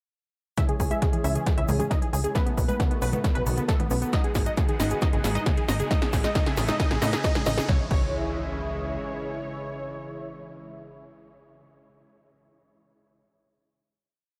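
Uplifting trance at 135 BPM in C# minor, this complete short piece feels euphoric and driving, climbing through a build from 0.6 s before landing on a held C# minor chord at 7.7 s. A punchy four-on-the-floor electronic kick sits up front, joined by a programmed techno kit of snare backbeat, smooth closed and open hats, high conga and crash, plus a grainy, very quiet hand-played egg shaker in sixteenths. A tight, nasal sequencer bass plays off the beat with sidechain pumping, under a silky, string-like analog pad with ensemble chorus and vibrato that sustains the chords C#m, B7, G#m7 and Aadd9. The lead is a lush, detuned unison pluck repeating a sixteenth-note riff in octaves over a pedal note, treated with phaser, delay and a filter sweep, and it is doubled in unison by a supersaw stab that also has a filter sweep and delay. A second, very quiet unison pluck runs a 16-step arpeggio sequence, electronic riser and impact effects mark the transition, and the whole mix carries light digital reverb.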